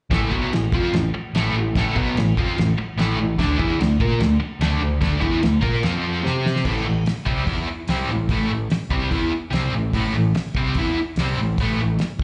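A biting, double-tracked overdriven guitar riff with harmonic tremolo and slapback echo drives this menacing, swaggering garage rock cut in A minor at 146 BPM, backed by a round, punchy hollow-body short-scale picked bass and a cloth-damped, thuddy drum kit with a fat snare, tight kick and dark cymbals, moving through A5, D5, F5 and C5 power chords until a drum fill at 6.2 seconds leads into a new section on A minor at 6.7 seconds, all heard as a live gig through a club PA with a dull, rolled-off top and light room reverb.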